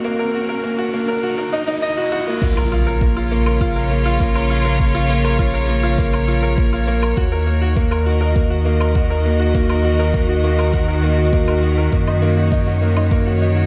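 A close, bowed chamber string section and a worn, brilliant grand piano riff with tape echo open this hypnotic, intimate piano-and-strings electronica piece in Bb minor at 101 BPM, while an electronic riser builds through a short break over an Ebm chord. At 2.4 seconds the drop arrives with an impact, and a round sine sub bass and a deep kick drum enter, the bass and soft-attack strings both pumping under sidechain. Tape-warm electronic crash, shaker and woodblock sit low in a dreamy plate-reverb mix as the chords move through Bbm, Ebm and Gb6.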